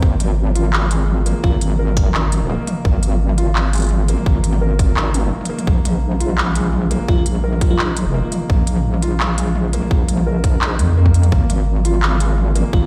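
A deep, soft wobble bass sits up front in this half-time drum and bass excerpt at 170 BPM, its detuned square and sine tones saturated, compressed and thickened with chorus into a mellow, heavy weight. Alongside it an overdriven, layered electronic kick hits tight and forward, while an industrial drum kit adds crisp hats, handclaps and toms re-recorded in a large room. A felt-muted upright piano plays soft, intimate arpeggios, boxy with audible action noise, roughened by vintage 12-bit sampler grit and trailed by digital delay. In the background a sparkling, bell-like FM electric piano flickers in briefly at 1.4, 7.1 and 12.7 seconds, shimmering with chorus, tremolo and tape echo. The harmony moves from Absus2 to Bb5 at 5.7 seconds, just after a short break, and returns to Absus2 at 11.3 seconds. The mix itself is dry, yet heard through a big sound system in a bare stone room, which lends the cinematic mood its stony, heavy air.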